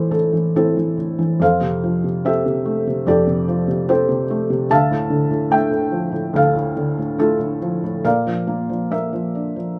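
A felt-muted upright piano carries this lyrical classical solo, its hushed, mellow tone sitting up front with audible action noise and short sustain that make it feel intimate, as if heard from beside the bench. The mood is dark and wistful, moving at a slow 68-74 BPM in 4/4 with a rubato feel that lets the time breathe. The harmony drifts from A minor through Fadd9 and Dmadd9 before arriving on B-flat at 8.1 seconds, the added ninths lending a bittersweet shade. The piano ranges from D2 up to A5, spanning deep low notes and a delicate upper register. A light reverb gives the close sound a touch of space, and the 9.8-second passage is cut from a longer piece.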